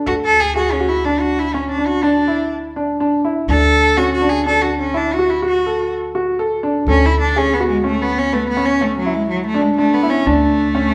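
Restless and shimmering, this excerpt of contemporary chamber music in an uneven 7/4 sets a rich, focused bowed cello melody with vibrato up front over open, long-sustaining arpeggios from a clear, slightly worn baby grand piano, while a woody, thumpy pizzicato upright bass holds a steady D beneath, the trio sitting in the reverberant space of a recital hall or church.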